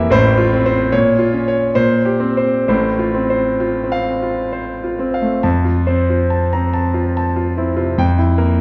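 Classical romantic character piece for solo piano in F major, unfolding in 3/4 at a rubato pace of roughly 63-75 BPM with a lyrical, passionate mood. A clear concert grand, up front with a deep bass and a smooth, vintage tone, spans the range from A1 to Bb5 as its harmony moves through F/A, Bbm and C5/Bb before a new section begins at 5.4 seconds on F and arrives on Edim/F at 8.0 seconds. Wet recital hall reverb surrounds the instrument in this short portion of a longer work.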